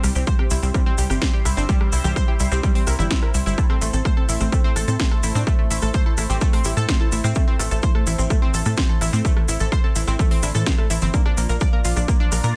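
This melodic techno excerpt in A phrygian opens at once with its full bed of synths, percussion and drums, and an overdriven, heavy electronic kick punches in up front at 0.3 seconds, driving a straight 127 BPM in 4/4. The mood is cinematic and dramatic: a tight, punchy sequencer bass with a sawtooth bite and a moving notch sits prominently beneath a round, detuned analog pluck that spins bright arpeggios through chorus, tape echo and a filter sweep. Behind them, a thick unison lead with vibrato carries a dark, bold melody, colored by tape echo, while an evolving, resonant pad holds sustained chords that swell slowly under chorus. Sidechain pumping breathes through the bass, pluck, lead and pad, and the overdriven drum kit adds a cracking snare, smooth hats, rim clicks and congas, joined by grainy, distant maracas in a large room. The harmony moves from C to Am at 3.6 seconds and lands on Bb near the close, all in a dry mix.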